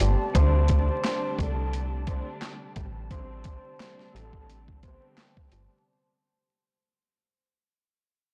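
A tough, gritty boom-bap hip-hop fragment opens with a pitched-down sampler-style drum kit of thumpy kick, high-tuned snare, hi-hat and handclaps, a dark, up-front FM bass with tube saturation, veiled con sordino strings with a cassette-tape tint, and a hollow, flute-like chorused pad; a mellow soft-mallet vibraphone melody with tape echo enters at 0.4 seconds as the blown-out, vinyl-crackled mix fades out.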